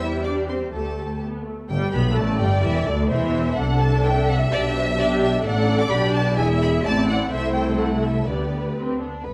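A quick, graceful classical-period movement for string orchestra, cut from a longer piece, with a rich, lush violin section singing the cheerful melody high above a smooth-topped second violin line, while even violas supply the accompaniment and a clear, lightly vibrant double bass section shares the bass with the cellos, all bathed in the dark, wet reverb of a recital hall.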